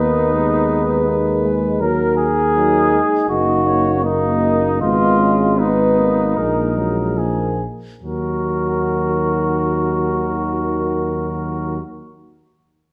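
Set in a reverberant recital hall, this grave, solemn brass quintet fragment in Eb minor moves at a rubato 70-82 BPM in 4/4, slowing from 0.3 s to 8.0 s. A distant, roomy trumpet with light vibrato carries the melody over a vintage-toned flugelhorn second line sitting up front, while a soft-attacked trombone and a warm French horn accompany in the background above a mellow bass trombone anchoring the low end. The harmony drifts through Abm/Eb, Ebm and Abm to a bare Bb5 before a new passage settles back on Ebm at 8.0 s.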